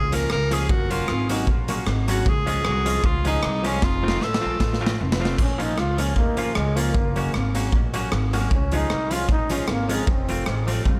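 Ska with an energetic, driving swing, cut from a longer piece, where a clear, present tenor saxophone solo with dub echo leads over woody pizzicato upright bass, twangy compressed clean guitar and a gritty, saturated garage drum kit in a pumping stone room, until a drum fill at 3.8 seconds hands the melody at 5.4 seconds to a smooth, vibrato-laden trombone, also bathed in dub echo.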